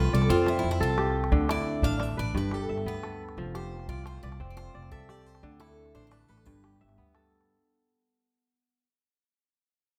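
A ringing, crisp kora spins arpeggios up front from the start of this flowing West African string and xylophone piece at 117 BPM in 12/8. Alongside it play a full-bodied picked steel-string guitar melody, a woody pizzicato upright bass, and a deep, dry calabash in the background. All fade out in F lydian within a moderate recital-hall reverb, and the kora rings on alone until 8.8 seconds.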